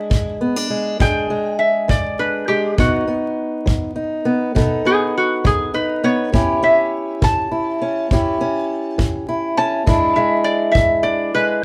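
A metallic, nasal resonator slide guitar carries the melody up front with fingerpicks from the first moment, over a boxy, fingerpicked acoustic archtop accompaniment, while a punchy, brushed kick drum joins at 0.1 s. This swaggering, rollicking acoustic country blues excerpt moves at 68 BPM in a straight 12/8 in E mixolydian, running from E7 through B7 and A7 and back to E7 at 9.9 s. The band sounds live in one room with moderate studio reverb and a layer of vinyl crackle.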